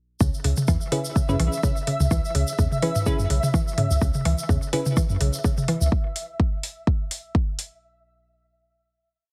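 Clinical and sparse, this short minimal techno piece runs at 126 BPM in C# minor, holding a single C# minor groove with a light swing on the sixteenths. A punchy, up-front electronic kick drives a four-on-the-floor pulse, joined by a deep sine sub bass with a pitch-drop attack playing a syncopated riff, its tube saturation and sidechain pumping giving it weight. A woody, round mallet-like synth pluck repeats a 6-step loop that drifts against the bar, coloured by chorus and digital delay, while crisp, warbling wavetable chord stabs move one shape in parallel through sparse echoing hits. Overdriven metallic hats with a programmed backbeat, clicking overdriven toms in cross rhythm, and a hand-played acoustic tube shaker in sixteenths fill out the percussion, as a flickering, grainy texture holds a bright high E5 in its own reverb. The mix sounds heavily compressed like a radio broadcast, with light reverb and a faint mains hum, and the kick and hi-hat carry on alone after the other parts stop near 5.9 seconds until about 7.7 seconds.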